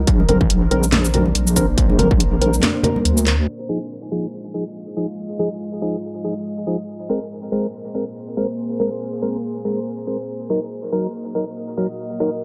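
A dry, gritty hardware sound with light reverb frames this brooding, meditative deep dubstep fragment in half-time swing, where a distorted up-front kick, a cracking garage kit with handclaps, hats and shaker, background congas and a wobbling square-wave bass drive the opening section before the groove falls away around a fill at 3.3, leaving a warbling sawtooth pad and hollow, nasal organ stabs with dub echo to drift through Fm7, Abadd9 and Gb6.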